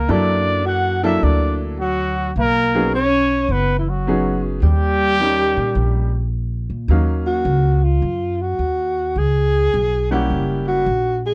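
A moody, late-night jazz excerpt swings at 106 BPM in 4/4, settling into Eb minor after its opening bars. A breathy trumpet carries the melody with a whispered, intimate tone and gentle vibrato until 6.3 seconds, while a mellow alto saxophone joins it as a second line, its scooped notes sounding distant and roomy. At 6.9 seconds the saxophone takes over as soloist, moving through Ebm7 and Dbm7 toward a closing Gb7b9. Beneath them a pizzicato upright bass gives a woody, thumpy pulse, and a bright, brilliant upright piano supplies open-sounding accompaniment across altered dominant and minor seventh chords. Close, detailed microphones and a light reverb keep every part up front.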